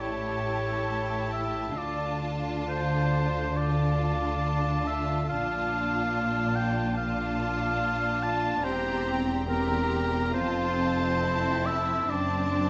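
Elegiac and yearning, this classical string passage moves with a flexible rubato as a violin section carries the melody in a high, vibrato-laden voice, joined by a clear, up-front solo oboe on a second line. Beneath them, a focused second violin section, smooth, lush violas, dark, distant cellos and rich double basses fill out the harmony from a chord of A7 through Dm, Bbmaj7, C7/E and F to a closing D7/F#. All parts play throughout the 12.7 seconds, which are cut from a longer piece and set in a wet, spacious scoring-stage reverb.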